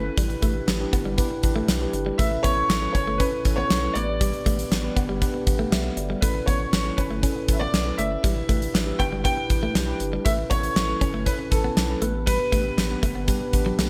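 1980s-style pop with an uplifting, romantic mood, where a clear concert grand piano carries the melody through lush chorus and delay over mellow tine electric piano accompaniment, a bright, clean electric guitar riff tucked in the background, a round, deep analog bass and a punchy, up-front gated drum kit entering at 0.2 seconds, with the electric piano adding a short fill at 13.5 seconds in this bright digital production cut from a longer piece.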